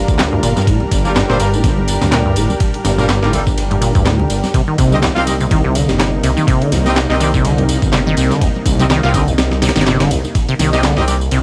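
Breakbeat at 124 BPM with a swung sixteenth feel and an energetic, gritty mood, built on a compressed, pitched-up sampler kit with a thumpy kick and medium-tuned snare, plus a softer tape-warm analog drum machine adding handclaps, ride and tambourine, and very quiet bright congas. A thick, menacing detuned saw bass and a rubbery, resonant acid riff with lush chorus and delay anchor the low end, while an airy unison pad with 12-bit sampler grit pumps against the beat, moving from Gm7 to Cm7 at 4.5 s. From 1.0 s a loose, close-miked horn section fires octave-doubled stabs through delay, all sitting in light reverb under a layer of vinyl crackle.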